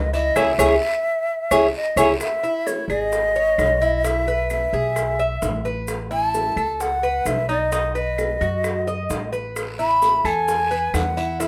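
A breathy, up-front jazz flute with vibrato and a soft attack carries the melody over picked, metallic double strings on the Cuban tres, which plays arpeggios, in this relaxed, danceable Cuban son and guajira cut at 130 BPM in 4/4. A dark, thumpy pizzicato upright bass on gut strings anchors a harmony moving from C#m through E/B, Aadd9 and B to Asus2. Tight, high-tuned bongos, woody claves and grainy maracas keep time in a moderate studio reverb, while a raspy guiro appears at the start and returns at 9.6 s, after an early band accent and drum fill that end at 2.2 s.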